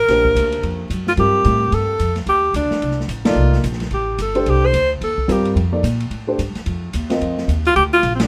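Cool and spiritual, this brief fragment of a modal jazz piece moves at a brisk 219 BPM in 4/4, with a light swing on the eighth notes and a home in C dorian. A breathy alto saxophone carries the melody up front, its clear subtone tinged with light vibrato, playing until 5.5 seconds and then returning for a short phrase at 7.7 seconds. Beneath it, a woody upright bass is plucked close and prominent, while a mellow baby grand piano comps, intimate enough that its action noise can be heard. An acoustic drum kit in a small room keeps time on hi-hat, ride, snare and a punchy kick, its cymbals dark and its top end rolled off, sitting well back in the mix. The harmony moves from Bb to Cm69 and back to Bb, the band hits a shared accent at 3.2 seconds, and everything is wrapped in a light reverb.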